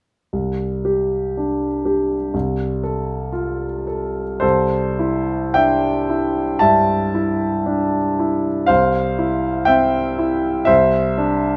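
Played in a loose, rubato 4/4, this dreamy, luminous impressionist solo piano excerpt features a clear, natural concert grand sitting up front with a deep bass, drifting through open, suspended harmonies over a steady C foundation in light reverb, its second section settling in at 4.4 seconds.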